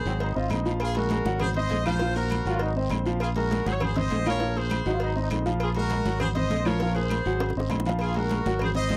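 Salsa in a fiery, danceable mood, this short cut from a longer piece puts a brilliant, punchy horn section up front on the melody, with a mellow trombone section adding a second line until about 5.5 seconds. A dark grand piano with audible action noise and short sustain carries the accompaniment over a bright fingered electric bass, while congas, cowbell and bongos, ringing agogo bells and timbales, woody claves and a raspy guiro sit in the background. The dry, close 1970s-style studio sound carries light reverb, and a drum fill arrives at 7.4 seconds.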